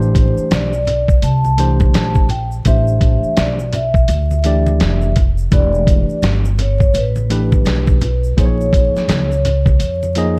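A dark, vinyl-crackled production set in a small room gives this nocturnal, cool jazz-hop excerpt its late-night haze, with a swung feel and chords moving from Am11 to Em7 and then Bbm7 near 8.4 seconds. Up front, a gritty, tape-warm sampler-style drum kit with a thumpy kick and fat snare pairs with a woody, bright pizzicato upright bass. Around them, a clean tine electric piano comps, egg shaker and congas add hard-handed acoustic texture, and a mellow, vintage vibraphone played with soft mallets carries the melody with a ringing, metallic tone and slow motor vibrato.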